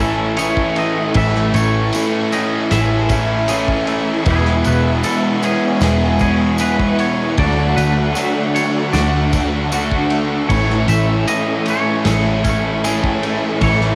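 Shoegaze and dream pop rock at 77 BPM, dreamy and blissful in this cut from a longer piece, where a twangy lead guitar with subtle chorus and tape echo carries the melody over an up-front crunchy overdriven riff drenched in lush chorus, a raw garage guitar with reverse reverb, a very quiet double-tracked sludgy guitar, faint direct-recorded clean arpeggios, a hushed sawtooth string machine, a round foam-muted bass, a jingly tambourine and a loose indie kit with dark cymbals entering at 0.4 seconds, all moving through Amaj7, E6 and Dmaj7 in a small-room home cassette recording.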